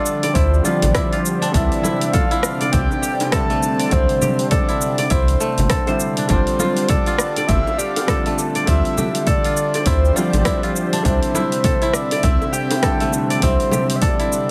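Organic downtempo at 101 BPM in 4/4 with a swung 16th feel, meditative and hypnotic, moving between Dm11 and C in this cut from a longer piece. A breathy, flute-like synth lead with vibrato and lush chorus carries the melody over a felt-muted upright piano with audible action noise, a crisp fingerpicked kora ringing out arpeggios through digital delay, and a warbling, vintage warm analog pad sitting in the background. Beneath them, an overdriven deep house kit of hi-hat, rim click and shaker enters at 0.1 s, followed by soft-handed bongos and congas at 0.2 s. At 0.4 s a round sine sub bass with sidechain pumping arrives together with a punchy, overdriven electronic kick, and the whole mix is set in digital ambience.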